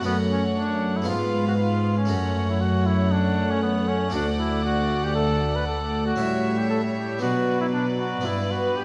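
A straight 4/4 pulse at 117 BPM drives this brilliant, festive fragment of a baroque-style concerto movement with solo episodes, tuned to A4 = 441 Hz and settling into D major from 4.1 s. A mellow, roomy trumpet carries the melody up front from the start, with light vibrato and a distant, classical-style solo voice, while a rich chamber violin section shares the melody higher up with a gut-string, period-style sound. Entering at 0.1 s, a dark studio violin section adds a smooth-topped second line, and a nasal chamber viola section fills in the accompaniment from the background. The warm chamber cello section anchors the bass up front with a reedy bowed tone, and an airy, bright French-style harpsichord plucks its accompaniment from the background on a single set of strings. The harmony moves from F#m through Fdim/Ab and back to F#m, then on to D, A7, Bm and G, all bathed in a moderate concert hall reverb.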